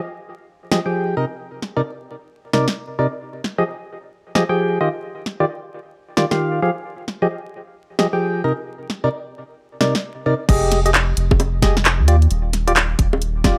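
A hollow, nasal organ stab leads this skippy, bouncy two-step UK garage excerpt, its percussive hits given a mellow chorus and tape echo as they move through Fm7, Cm7 and Ebmaj7 in F dorian. The groove runs at 132 BPM in 4/4 with a 63% swing on the sixteenths, and from 0.7 seconds a tape-warm garage kit of bongos, handclaps, hi-hat, crash cymbal and a cracking snare sits up front beside the stabs. At the drop at 10.5 seconds, a tight electronic kick and a deep, round, soft dub sub bass arrive together, the bass sitting low and sustained beneath the chords. The whole cut carries a faint bed of vinyl crackle and light reverb, giving the bouncy rhythm a slightly worn, dusty sheen.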